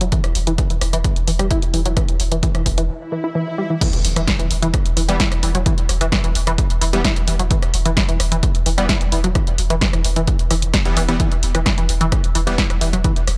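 A tight, detuned sawtooth-and-square synth riff with chorus and delay opens this relentless, hypnotic cut of driving peak-time techno, riding over a thick, saturated sub bass, a punchy electronic kick and an up-front analog drum machine of snare, rim click, hi-hat and crash, both drum parts re-recorded in a large room. An electronic swell and impact mark a short break near 3.0 seconds before the drop at 3.8 seconds, and a supersaw stab with unison voices and a filter sweep enters in the background at 5.1 seconds. Sidechain pumping breathes through the synth, bass, stab and the drum machine's hats and cymbals, set inside a digital ambience.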